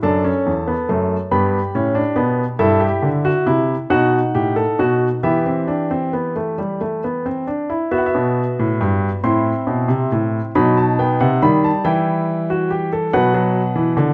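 A warm baby grand piano plays solo throughout a lively, joyful baroque-style four-part fugue in E minor, moving in a straight 6/8 at 46 BPM counted in dotted quarters and spanning E2 to C6. The piano sits natural and up front under close, detailed microphones, with a moderate recital-hall reverb adding air. Harmonies pass from D and G through B7 to E minor, and a second passage begins at 7.9 seconds, travelling through Am and B before settling on Bm as this short cut from a longer piece ends at 14.1 seconds.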